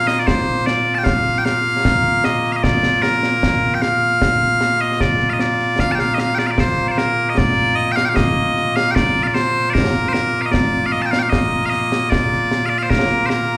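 A live club recording heard through the venue's PA, with light reverb and a small-room ambience around a slapback echo. In this proud, stirring piece of Scottish pipe music in 2/4, the bright, piercing bagpipes carry the continuous melody up front from the opening second. A close, acoustic concert snare and bass drum with dark cymbals supports them throughout this short cut from a longer piece, with a new section arriving at 7.4 seconds.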